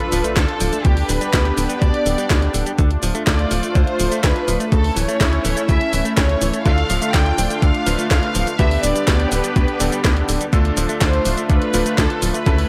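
A very quiet electronic impact opens this bittersweet, melodramatic italo disco piece at 124 BPM in D dorian, as an intimate violin section carries the melody with light vibrato and delay over a smooth, warbling analog pad and a layered house kit of cabasa, handclaps, hi-hat and cracking snare in gated reverb. A tight, saturated sawtooth sequencer bass and a thumpy electronic kick drive the straight 4/4 pulse, while a clean, direct-recorded electric guitar plays delayed, picked arpeggios in the background over chords moving between Dm, G/D and A/D. At 6.7 seconds a bright, clangy electric grand piano joins with cutting stabs, and the mix sits in a light reverb.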